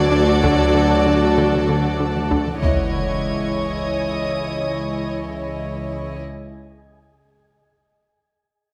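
A cinematic suspense cue in C# minor at 96 BPM, this brief fragment from a longer score feels mysterious and ominous, moving from a D chord to C#madd9 at 2.6 seconds. Bowed string sections played sul tasto with soft attacks carry the sound: a rich, distant violin melody floats above a second violin line and an intimate viola accompaniment with light vibrato, while cellos and double basses share a low, smooth-topped bass. High above, a dark, close violin texture hovers until 5.1 seconds. A dark French horn section holds distant, roomy chords in the background, joined by an airy, breathy wind-like noise texture with its own built-in reverb. Early on, a punchy, funky analog bass riff with a decaying filter pluck and ring-modulated, wave-folded tone runs from 0.1 to 2.5 seconds, and a taiko ensemble struck with hard sticks plays in a small room behind it. A huge, dark impact lands at 2.9 seconds, and the whole cue sits on a moderate scoring-stage reverb captured through close, detailed microphones.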